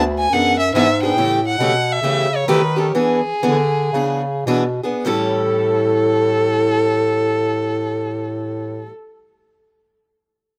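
A warm, bowed violin with vibrato and expressive portamento carries the melody over a clear bass clarinet bass line with light vibrato and scooped notes, joined at 0.3 seconds by a bright, boxy picked steel-string parlour guitar with fresh strings and finger squeak, in a swinging, lively acoustic jazz manouche excerpt in A mixolydian that moves between E7 and A7 and slows from 1.2 to 5.1 seconds, all captured dry in a rough home demo mix.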